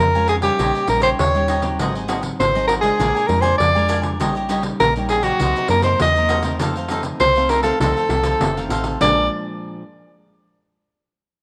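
A breathy soprano saxophone opens this lively, nostalgic samba and choro piece at once, carrying the melody up front with a clear, jazz-style vibrato over a fingerpicked nylon-string guitar and a round, woody FM bass that starts together with it at 0.0 seconds. A bright, crisp picked cavaquinho and a jingly, vintage-sounding pandeiro played with soft hands join almost immediately, filling out the accompaniment at a straight 100 BPM in 4/4. The music sits in Bb minor, moving through Bbm7, Eb7/Bb, Ab7, Bb7, Cm7b5 and F7 before a new passage arrives on Bb7 at 9.0 seconds. The classical guitar has a gentle warmth and an audible finger squeak, while the dark, fast-attack bass notes decay beneath it. A moderate echo-chamber reverb gives the ensemble a roomy glow, and the guitar rings on alone until 9.8 seconds in this short excerpt cut from a longer piece.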